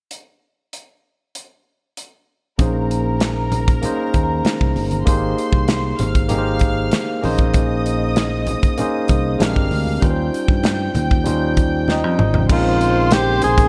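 Set in a small room with light reverb, this smooth, bittersweet passage of lush 1970s-style soul, cut from a longer piece, opens with polished, airy drums alone until 2.6 seconds, when a barky, lightly overdriven electric piano, a fingered electric bass, very quiet damped congas and a string section with gut-string tone and light vibrato all enter; at 11.9 seconds a drum fill arrives alongside a breathy, scooped tenor saxophone, followed by a faint rotary tonewheel organ with key click at 12.5 seconds and a brief jingly tambourine.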